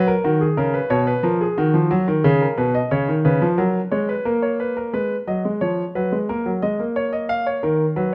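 In a straight 4/4 at 90 BPM, this short baroque-style two-part invention for solo grand piano feels driving yet contemplative, and it is cut from a longer piece tuned to A4 = 441 Hz. The warm, natural piano sits up front, ranging from B2 to E#5 and moving from F#, B and C#7 back to F# before a second section from 4.9 seconds turns through Fm7b5 and A#m to D#m. Close, detailed microphones capture it in a recital hall with a moderate reverb of 1.6 seconds.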